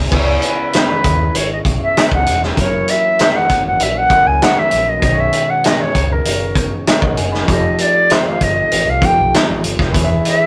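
This lush 1970s-style soul fragment has a smooth, bittersweet mood, moving at 98 BPM in a straight 4/4 feel in C# dorian. An airy, expressive concert flute carries the melody up front from 0.5 seconds, its straight tone tongued and softened by rolled-off highs. Beneath it, a grand piano plays intimate accompaniment with audible action noise and long sustain, while a vintage muted fingered electric bass gives a round, foam-muted, amped low end. A mellow French horn section holds loose, classical-style sustained chords in the background, and a vintage acoustic drum kit sits prominently with a punchy kick, medium-tuned snare, hi-hat, crash and dark cymbals, all saturated and gritty. The harmony moves from C#m7 through F#7, B69 and F9 before landing on E at 9.9 seconds, and the rough rehearsal-room recording carries a moderate studio reverb.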